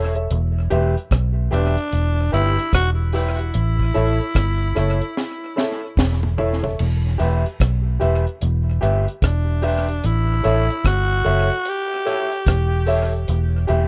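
A relaxed 74 BPM groove with a swung sixteenth feel drives this laid-back, uplifting roots reggae cut, built on a round, foam-muted vintage bass and a dry, dark drum kit with a high-tuned snare and tight kick sitting up front, touched with tape echo and marked by a drum fill from 5.2 to 6.8 seconds. A worn, woody upright piano with audible action noise adds mellow stabs, while a slightly broken-up, lo-fi electric guitar with subtle chorus and tape echo sits in the background over the Em-to-A changes. From 1.5 seconds a raspy, gritty tenor saxophone carries the vibrato-laden melody, close-miked with plate reverb, in a rough home demo mix taken from a longer piece.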